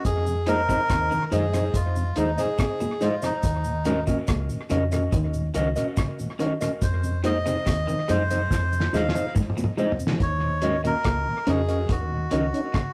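Roots reggae at 71 BPM in Eb dorian, hypnotic and meditative, cut from a longer piece and moving between Fm7 and Ebm7. A reedy, breathy melodica sits up front and carries a solo from the start until 10.2 seconds, while a cloth-damped, thuddy drum kit with a fat snare and tight kick sounds dry and dark, touched by tape echo, and plays a fill from 8.5 seconds. Beneath them a deep dub bass, foam-muted and round, holds the low end, and a mellow tonewheel organ with chorus vibrato and a slow rotary speaker hovers in the background. A dark, fingered electric guitar with tape echo adds accompaniment, and a twangy, compressed clean guitar picks arpeggios further back, alongside a faint cabasa that stops at 10.2 seconds. The whole track has the rough character of a rehearsal room, with tube saturation and a short, wet studio reverb.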